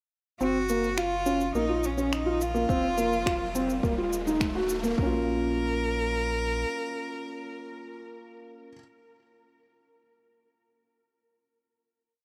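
Hypnotic and intimate, this short piano and strings electronica piece in Bb minor at 105 BPM builds from 0.4 seconds as a soft, felt-muted upright piano ostinato with audible action noise and a clear, bowed cello carrying arching motif phrases with vibrato, both touched with delay, rest over a round sine sub bass with sidechain pumping and a restrained electronic shaker-and-snap pulse, while a deep four-on-the-floor electronic kick enters at 2.7 seconds and a background riser leads to a final Bbm chord at 5.0 seconds.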